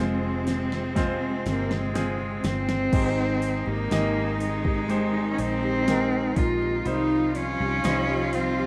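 A slow, straight 4/4 pulse carries this tender, heartfelt pop ballad fragment, cut from a longer piece. The smooth R&B drum kit comes in at 0.5 seconds with a fill that runs until 2.9 seconds: a soft kick, fat snare, metallic hi-hat and crash, all with an electronic, produced character and the sound of a large room. Up front, a single bowed cello sings the melody with rich, even vibrato and a smooth top. A bright, focused, lush cello section bows a second line alongside it. A clear, polished baby grand piano accompanies from the background, a very quiet jumbo steel-string guitar adds fingerpicked arpeggios with fresh, full-bodied strings, and a vintage foam-muted electric bass supplies a dark, round, punchy low end. The harmony moves from Fm to Abmaj7 at 2.9 seconds and to Cm at 6.9 seconds, all set in a wet studio reverb with a rough home-demo mix.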